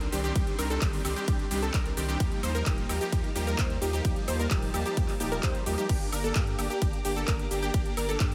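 Festival progressive house at 130 BPM with a powerful, euphoric drive, built on huge, detuned supersaw chords with 12-bit sampler grit and digital delay, a deep, saturated sine sub bass and a punchy unison pluck arpeggio, all pumping to the sidechain, over an overdriven big-room kit with metallic hats, claps, shaker, woodblock and cymbals, a punchy electronic kick entering at 0.4 s, faint bowed strings holding chords high above, and a very quiet swell at 5.2 s, moving through Cmadd9, Ebadd9 and Gm in a dry, up-front mix.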